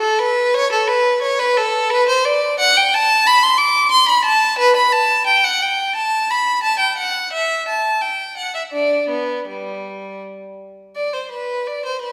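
A single violin, rich and focused with vibrato, plays alone up front in this radiant, dance-like baroque-style suite movement in G major, moving in 3/4 at around 80-91 BPM with a flexible rubato feel. The bowed line ranges from G3 up to D6, and a wet recital-hall reverb with a 1.7-second tail surrounds it, as if heard in a church or concert hall. This brief cut from a longer piece runs just over 12 seconds, with its opening material returning at 11.0 seconds.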